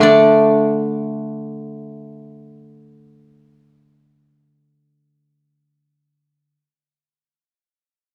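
A solo guzheng, played with fingerpicks, sets out a serene and elegant line in the Chinese traditional style, its silvery, ringing tone sitting up front across a span from the low to the upper-middle register. The bright acoustic strings carry through a moderate recital-hall reverb that suggests a church or concert hall. This short passage of about 6.5 seconds is cut from a longer piece.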